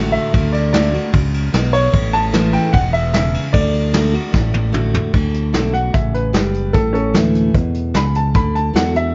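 A straight 4/4 shuffle-free pulse at 150 BPM drives this heartfelt, down-home honky-tonk and classic country clip in D major, cut from a longer piece, with a woody upright piano carrying the melody over a bright, full-bodied picked steel-string acoustic guitar and a fingered electric bass that sits up front. A vintage brush drum kit with dark cymbals and a punchy kick plays a fill from 4.3 to 5.1 seconds, leading into an upright piano solo that runs from 5.1 seconds to the end at 9.1 seconds as the chords move between D and A. A moderate recital hall reverb surrounds the band, and the top end is rolled off for a mellow, vintage sound.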